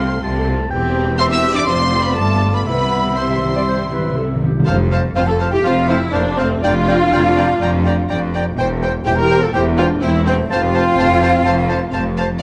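A graceful, lively classical-period orchestral movement at 123 BPM in 4/4, moving from C major to F major at 4.7 s, with a focused violin section carrying the melody, joined by an airy flute, a smooth-topped oboe, lush background violins and a distant clarinet entering at 3.2 s on second lines, expressive violas with portamento, tight mellow horn chords, even cellos and double basses on the bass, and round calf-headed timpani with a fill from 2.7 s to 4.7 s, all set in a moderate recital hall reverb.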